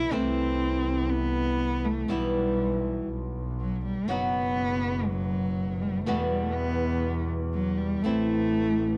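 Playful and elegant, this short tango fragment moves at 121 BPM in 4/4 with a rubato feel, set in E harmonic minor and cut from a longer piece. A dark, expressive cello plays a second line and takes a solo across the full 9 seconds, bowed by one player with vibrato and portamento and a smooth top, sitting up front in the mix. Beneath it, an acoustic flamenco guitar is fingerpicked on fresh strings with a warm tone. A clear, focused double bass enters at 0.1 seconds, bowed by a single player with vibrato and also placed up front. The harmony moves from Amadd9/C through Em/B and a long B chord to Emadd9, closing on Am. The sound is a dry, close studio recording in a 1970s style.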